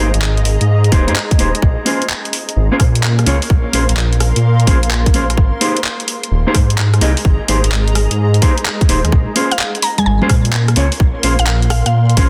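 UK garage in a swung two-step groove with a bouncy, late-night mood, built on a deep, rumbling detuned saw bass and a tight, up-front electronic kick arriving at 0.9 seconds, with a garage kit of congas, handclaps, rim clicks and bright hats, clean fingered electric guitar stabs soaked in spring reverb and delay, a cloudy, evolving granular pad that pumps beneath it all, and a woody, round mallet-like synth pluck with chorus and tape colour appearing at 9.5 seconds, all in a dense, heavily limited modern master.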